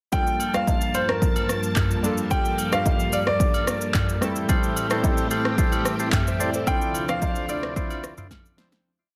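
Dense, heavily limited and lightly reverberant, this short, hypnotic and deep amapiano piece at 110 BPM in G dorian moves over Gm9, Am7 and Dm9: an up-front deep house kit with punchy kick and snare, steady shaker and syncopated rim sits under a clear, intimate grand piano playing call-phrase motifs through tape echo, while round, detuned analog keys push drop2 chords with short fills, a shimmering, warbling string machine pad pumps with sidechain, and an agogo bell and woodblock timeline stays in the background, before a fat, lightly overdriven tonewheel organ adds short syncopated stabs from 4.5 s, the mix fades out from 6.7 s and a drum fill closes at 8.3 s.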